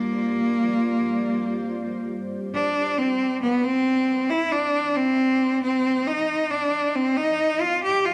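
A dark, warm production with echo-chamber and small-room reverb frames this glitchy, playful IDM fragment in free time, tuned to A4 = 441 Hz, where a single bright, biting bowed cello carries the melody up front with vibrato and tape echo from 0.0 to 8.1 s, while a blurred, detuned granular cloud pad with its own reverb sustains a mellow Gm7 chord until 2.1 s.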